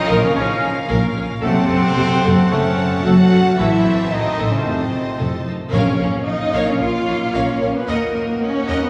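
Bathed in a cavernous church reverb, this dark, epic orchestral film-score excerpt sets a lush, expressive violin melody against a clear, intense second violin line, a rich viola section, mellow, distant French horns, very quiet woodwind chords, a soft vintage trombone section and stabs from a dark, roomy trumpet, grounded by smooth cellos and woody, up-front double basses, before an airy concert flute and brief timpani on calf heads enter at 5.7 s as a new section begins.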